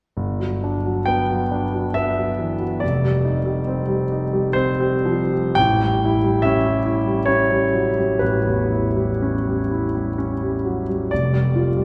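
Classical impressionist solo piano in a serene, luminous mood: a short excerpt in rubato 3/4 at 56-74 BPM in G lydian, tuned to A4 = 436 Hz, where a clear, intimate concert grand with audible action noise, deep bass and long sustain sits up front across a range from F1 to G5, moving from Gmaj7 at 0.2 s through Fsus2 and A9 at 5.6 s back to Fsus2, all bathed in a wet church reverb with a 3.1-second decay.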